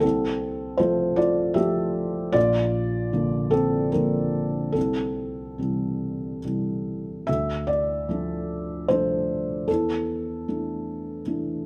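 Neoclassical minimalist piano in D minor, wistful and melancholic, drifting in a rubato 3/4 around 70-78 BPM as a solo felt-muted upright piano, dark and intimate with thick felt and audible action noise, sits up front in a moderate stone room reverb, spanning Bb1 to E5 through F/C, Bb, C6, Dm7 and Asus4/E in this 11.7-second fragment of a longer piece, tuned to A4 = 439 Hz.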